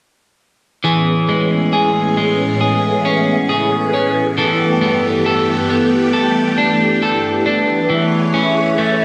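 A slightly broken-up electric guitar sits up front in this ethereal, blissful dream pop excerpt, picking arpeggios through lush chorus and tape echo from 0.8 seconds. Alongside it, a phased string machine, also up front, holds sustained chords with a swirling, vintage sawtooth character, its bright tone shaped by ensemble chorus and a moving notch from the phaser. The harmony shifts from Amaj7 to G69 at 4.4 seconds before returning to Amaj7. At 7.9 seconds a soft, hollow synth lead with a woody, clarinet-like quality enters on a single high note, warbling with vibrato and detuned chorus and trailed by tape echo. The whole mix is steeped in a wet spring reverb and heavy echo, giving the straight, unhurried pulse a dreamy, floating haze.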